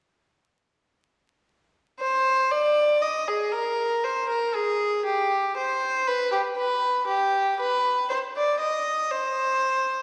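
This is a classical excerpt in C minor, set at a slow 59 BPM in straight 4/4, with a mood both solemn and driving. A single bowed violin carries a second line from 2.0 to 10.0 seconds, moving between G4 and Eb5. Its gut-string tone is rich and nasal with a reedy edge, played in period style and placed up front. The tuning sits at A4 = 442 Hz. The recording sounds as if heard from further back in a concert hall, with a wet reverb lasting 2.0 seconds and vinyl crackle over the sound.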